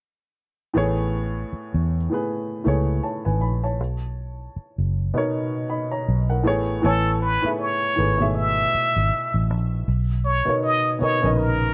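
A trumpet with a plunger mute takes the lead at 6.8 seconds, its brilliant, punchy tone carrying a wah-wah edge and vibrato as it plays a forceful, jazz-style solo up front. Before it, a dark baby grand piano and a vintage electric bass set a smooth, relaxed R&B and neo-soul groove at 79 BPM in 4/4, with a lazy 16th-note swing. The piano is mellow and intimate, with short sustain and audible action noise that gives it a close, natural presence, while the foam-muted fingered bass sounds round and amped. The harmony moves between Amaj9 and Bmaj9 chords in A major, and a light reverb leaves the parts sounding close. This brief excerpt is cut from a longer piece.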